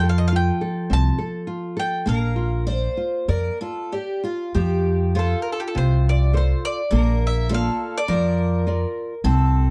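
Tender and nostalgic, this fado-style ballad moves with a rubato feel at around 102 BPM in 4/4, starting in Bb major and settling into F major from 4.5 s, in a brief cut from a longer piece. A bowl-back mandolin carries the melody with a bright, picked tone on double strings, stopping at 8.9 s while the other parts continue to 9.7 s. Beneath it, a picked twelve-string acoustic guitar adds a shimmering, octave-doubled second line. A fingerpicked nylon-string classical guitar sits up front with the accompaniment, and a pizzicato upright bass with steel strings gives a woody foundation that is also close and prominent. The harmony alternates between F and Bb chords, and the sound is a dry, close 1970s-style studio recording with light reverb.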